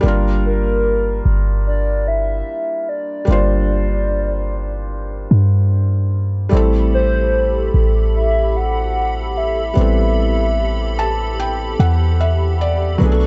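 A hollow, woody clarinet-like synth lead with a warbling vibrato and chorus and delay carries the melody from 0.5 seconds in this longing, late-night contemporary R&B excerpt, set over a felt-muted upright piano whose mellow, intimate tone lets its action noise through. A deep, boomy 808-style bass sits up front beneath them, and a soft, flute-like pad with ensemble chorus enters at 6.5 seconds as the harmony moves from Gm7 to Am9. The piano closes with a fill from 10.6 seconds, all in a dry, dark-toned mix with little reverb.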